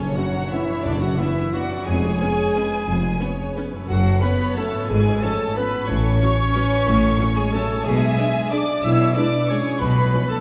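Opening at once, a sweeping, bittersweet classical orchestral passage in 3/4, cut from a longer piece, with uneven beats and rubato, has a smooth, vibrato-rich violin section carrying the melody over background lines from a bright, pure flute ensemble, a dark, roomy cor anglais, a woody violin section, and a present, mellow clarinet, while a French horn section holds mellow sustained chords, a viola section adds lush accompaniment from 0.2 s, an intense cello section and distant bowed double basses anchor the bass, a very quiet ringing harp traces arpeggios, and a close, dry timpani stroke sounds briefly at 0.9 s, all set back in a reverberant scoring-stage space.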